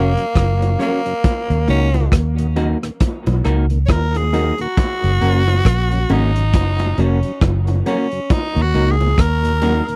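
Roots reggae at 68 BPM in F# major with a sunny, uplifting swing, cut from a longer piece, where a raspy, bright tenor saxophone solos with tape echo over a gritty breakbeat kit of punchy kick, hi-hat and rim click entering at 0.2 seconds, a round, foam-muted fingered bass up front, a clean hollow-body semi-hollow guitar also echoed, a very quiet tonewheel organ with chorus vibrato, and low-tuned bongos in the background, all moving between F# and D#m in a dry, close 1970s-style studio sound.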